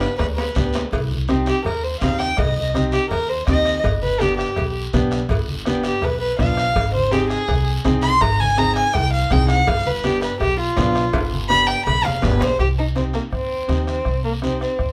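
Cumbia at a driving, fiery 164 BPM in C harmonic minor, this excerpt from a longer piece opens with a drum fill before a dark, intimate bowed violin steps up front for a smooth solo with light vibrato from 0.9 to 12.6 seconds. Beneath it run a bright, brilliant upright piano, a woody pizzicato upright bass, a soft-beater bombo and low-tuned congas sitting in the background, and a raspy guiro, while ringing vintage timbales and cowbell drop out at 12.5 seconds. The band plays live together in one room with moderate studio reverb over chords moving from Cm through G, Ab and G7.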